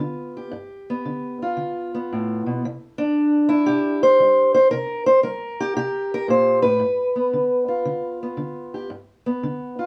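Soulful and laid-back, this short excerpt from a longer piece is acoustic country blues played by a single fingerpicked steel-string acoustic guitar. It moves at 114 BPM in 4/4 with a 68% swing on the eighth notes, centred in G mixolydian and tuned slightly sharp to A4 = 441 Hz. The guitar has a dark, boxy parlour tone and sits up front, ranging from G2 to C5 across the full 9.9 seconds. The harmony moves from G7 to C7 at 2.6 seconds and returns to G7 at 6.8 seconds. A wet studio reverb with a 0.6-second decay gives the instrument a modest sense of room.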